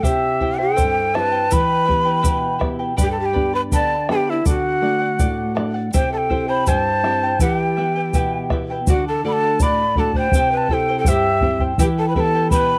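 Melancholic yet festive, this Andean folk passage in E minor moves at 82 BPM in a straight 2/4 and is cut from a longer piece. A breathy, tongued quena with vibrato carries the melody up front, touched by tape echo, while bright cane pan pipes with chiff play a second line beneath it, over shimmering fingerpicked charango, a full-bodied thumb-plucked nylon-string guitar, a round vintage bombo and a grainy tube shaker. The dry, close 1970s-style studio sound frames the opening section, which gives way to a second section at 8.9 seconds.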